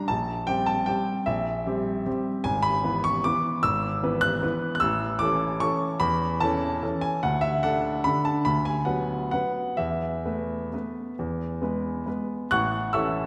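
Elegant and sparkling, this short excerpt of a classical piano waltz in A major moves in 3/4 with a supple rubato, its tempo drifting between 127 and 162 BPM. A baby grand piano plays solo throughout, its warm, natural tone placed up front with a short sustain, ranging from deep bass to bright upper notes. A wet concert hall reverb surrounds it as the harmony opens on C7/Bb, passes through E/G#, D and Esus4, and settles on A at 12.5 seconds.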